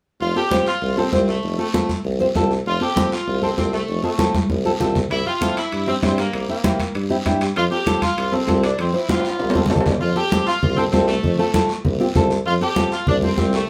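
Latin cumbia at a brisk 196 BPM in F major, sunny and joyful, with an edgy, tight saxophone section carrying the melody up front over a punchy tuba bass full of scooped notes and vibrato, fingerpicked nylon-string guitar accompaniment, bright soft-handed congas and a raspy vintage guiro, while ringing metal-shell timbales join in the background from 5.1 s to 10.0 s in this live-in-one-room cut from a longer piece.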